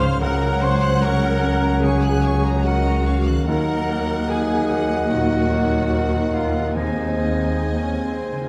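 A rubato 4/4 pulse at 73 BPM carries this uplifting, hopeful cinematic passage, cut from a longer piece, through Gb/Db, Ebm and Ab/Eb chords over 8.5 seconds, with a clear, vibrato-laden violin section singing the melody between Gb5 and Gb6. Beneath it, a distant, rich second violin section, an airy silver flute with a crisp attack, a dark solo clarinet and a soft-attacked oboe in the background weave second lines. A natural grand piano, a smooth-topped viola section, a roomy French horn section holding sustained chords, faint ringing fingerpicked harp arpeggios, and expressive bowed cellos with portamento alongside close chamber double basses fill out the sound on a moderate scoring stage with detailed, close microphones.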